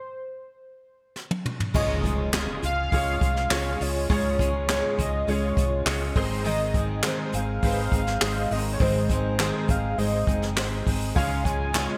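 Bright, 1980s-style digital production with light reverb and a touch of studio ambience frames this hopeful, uplifting piano-driven pop excerpt in Db major, moving at 102 BPM in a straight 4/4. A velvety synth lead carries the melody from the very start, its smooth sawtooth-and-triangle tone thickened by unison voices, chorus and vibrato, and it sits alone over an unaccompanied stop until a brushed drum fill at 1.2 seconds. At 1.7 seconds the full band arrives alongside a very quiet electronic impact. A clear, vintage concert grand piano with deep bass and ensemble chorus supplies the accompaniment, while a fingerpicked jumbo steel-string acoustic guitar with fresh strings and lush chorus plays a full-bodied riff. Underneath, a dark, round, foam-muted electric bass adds a punchy low end, and the up-front jazz brush kit, with its high-tuned snare, punchy kick, dark cymbals, toms, hi-hat, crash and handclaps, is treated with gated reverb. 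The harmony moves from Db to Ab at 6.2 seconds before returning to Db.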